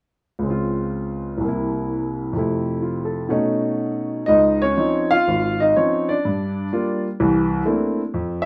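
Solo jazz piano at 125 BPM in 4/4, with a 68% swing on the eighth notes and a rubato, loosely placed pulse that gives this short excerpt of a longer piece a relaxed, warm mood. A warm grand piano with a smooth, vintage tone and long sustain plays alone and up front from 0.4 to 8.5 seconds, ranging from Ab1 to F5, with a light reverb around it. The harmony moves through rich extended chords, opening on Dbmaj7 and passing through C7, Fmaj7 and Cb9 before a second section at 4.3 seconds settles on Dbmaj9, then Gm7 and a closing C13.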